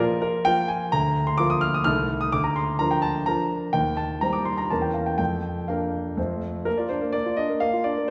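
A smooth, vintage-toned grand piano sits up front in a wet recital hall, its notes trailing into a reverb that lingers for about 1.7 seconds. This short classical-period sonatina fragment, cut from a longer piece, moves in a graceful three-beat metre with a straight, playful lilt. The piano plays alone throughout, spanning from C2 in the bass up to F6. Its harmony passes through inverted Bb chords, a diminished chord and Cm/Eb before an Edim7 and Bb/F lead to an F chord at 6.2 seconds. A new section begins at 6.7 seconds on a Bb chord, and the recording ends at 8.1 seconds.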